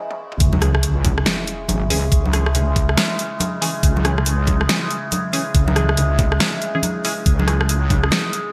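A bright, 1980s-style digital sheen with light reverb frames this brooding, meditative deep dubstep excerpt in C# minor at 140 BPM, half-time with a swung 16th feel, where a short drum fill gives way at 0.4 seconds to a drop built on an up-front, saturated, detuned sawtooth wobble bass, a knocking, tape-warm electronic kick, a gated-reverb dubstep kit with a huge snare, bright hats, rim clicks and toms, a sub drop, ringing congas with dub echo, muted phased chord stabs, and a wave-folded drone with moving overtones, chorus and phaser sustaining throughout.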